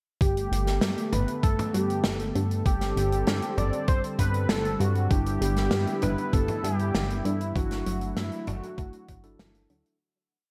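A lightly reverberant studio sound frames this nostalgic, romantic synthwave piece in G major at 98 BPM, a complete short verse moving through Gadd9, Csus2/G, Em7/G and Dadd9/G before fading out from 6.7 seconds. An up-front, thumpy sampler-style electronic kick and a driving, glossy chorused synth bass of detuned pulse and sawtooth tones play alongside a natural country drum kit of medium-tuned snare, closed hi-hat and low tom with gated reverb. Above them, a smooth detuned pad with chorus and sidechain pumping holds sustained chords under a thick, bold unison lead with vibrato and digital delay carrying a motif-based melody, and at 5.1 seconds a very quiet, warbling lo-fi pluck adds an eight-step arpeggiated sequence while a clean tine electric piano sits in the background with close-voiced held chords and syncopated pushes.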